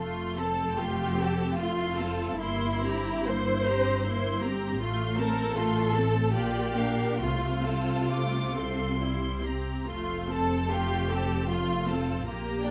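A moderate recital-hall reverb gives this short passage from a slow romantic movement for string orchestra a gentle sense of space, its tender, serene mood unfolding in F major at roughly 64-82 BPM in a rubato 3/4. A distant, smooth first violin section carries the melody high above, its vibrato even and lush, while a second violin line enters at 0.4 seconds sounding dark, woody and up front. The violas fill in the accompaniment with an intense tone and a smooth top. Beneath them, a focused, close cello section and an even double bass section anchor the bass together. The harmony moves from F through C7/G, F/A and Bb before settling back on F near 9.9 seconds.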